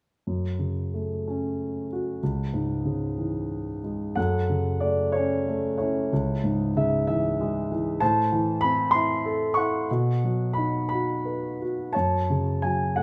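Classical solo piano in 6/8 with flexible rubato, this melancholic, reflective excerpt features a concert grand heard up front with deep bass, its lyrical line moving through a section that begins at 4.2 seconds and touches a brief shift to A minor and B major before settling back home, all carried by a moderate recital hall reverb.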